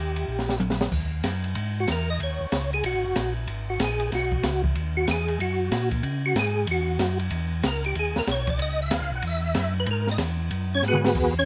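A percussive tonewheel organ with third-harmonic percussion, chorus vibrato and a slow rotary speaker takes a round, dark solo from 0.9 seconds in this smoky, soulful soul jazz organ trio excerpt at 188 BPM in G# minor with a swung 4/4 feel, over a mellow, clean organ bassline and an up-front acoustic jazz kit with dark cymbals, a high-tuned snare and a boomy kick, the kit playing short fills at 0.3 and 10.8 seconds, all in a dry, close sound as the chords move from G#m9 to C#m9 and back to G#m7.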